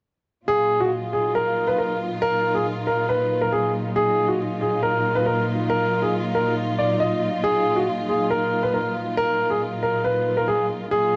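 An intimate concert grand piano carries the melody from 0.5 s to 11.2 s. Its long sustain and audible action noise sit up front, trailed by a digital delay. Beneath it, a lush, woody string section holds bowed chords with vibrato over an Ebmadd9 in Eb minor, while this cold, ominous hip hop fragment moves at 138 BPM with a half-time feel in a small room with light reverb and a dark, warm production.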